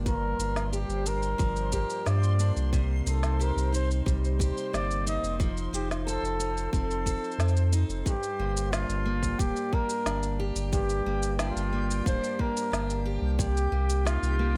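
A mellow, distant flugelhorn with light vibrato and tape echo sings the solo melody over picked steel-string acoustic guitar arpeggios, also echoed, a deep, round sub bass sitting up front, a reversed, dreamy granular texture swelling in the background, and a tight electronic kick with shaker and woody snare, giving this wistful, delicate folktronica excerpt at 90 BPM in G minor its gentle drift through Gm7, Cm7 and F7.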